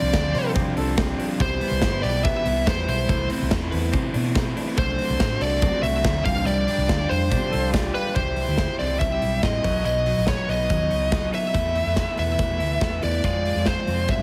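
A heavily compressed, radio-ready sound in a moderate club room carries this breezy, bright excerpt of jangly indie pop in C major at 142 BPM, where a smooth overdriven lead guitar sings the melody up front over crunchy background rhythm guitar, twangy twelve-string arpeggios, a round, foam-muted vintage bass and a punchy big rock kit, while a raspy, growling trumpet adds brief second lines at 0.3 and 7.5 seconds before the chords shift from Cmaj7 and D7 toward a closing Fm.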